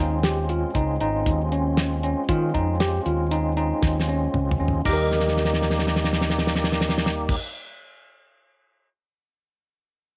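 A cloth-damped, thuddy drum kit sits up front with a fat snare and tight kick, rolling through fills in this bright, intricate progressive instrumental in 5/4 at 117 BPM, cut from a longer piece in Eb mixolydian. A round, punchy fretless bass and a bright tine electric piano playing arpeggios share the groove with a percussive tonewheel organ, whose key click and chorus vibrato colour the accompaniment, while a grainy tube shaker sits in the background. The harmony moves from Dbmaj9/Ab to Eb at 4.9 seconds, and a small room with moderate spring reverb surrounds the band until the other parts stop at 7.4 seconds, leaving the drums alone until 8.9 seconds.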